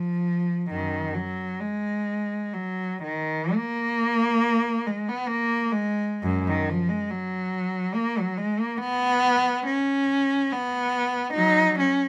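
A light reverb surrounds a single bowed cello placed up front, giving this short fragment of a longer piece an intimate, close sound. It is a free, expressive classical solo in F# major and 3/4, moving with a rubato feel somewhere between 55 and 73 BPM. The cello's tone is rich, with soft attacks, vibrato and sliding portamento between notes. Its line ranges from F#2 up to D#4 across the 12.1 seconds it plays alone. The mood is serene and nostalgic, shaped entirely by one player's expressive phrasing.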